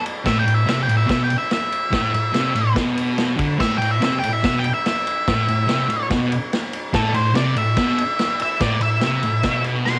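A straight 4/4 beat at 144 BPM from a gritty, saturated vintage drum kit with dark cymbals, a tight kick and a medium-tuned snare drives this swaggering, menacing garage rock excerpt in A minor, as a thick, double-tracked fuzz guitar riff enters low at 0.3 seconds beneath a picked, distorted octave-fuzz lead guitar solo colored by tape echo, with all three parts up front in a small room touched by light reverb.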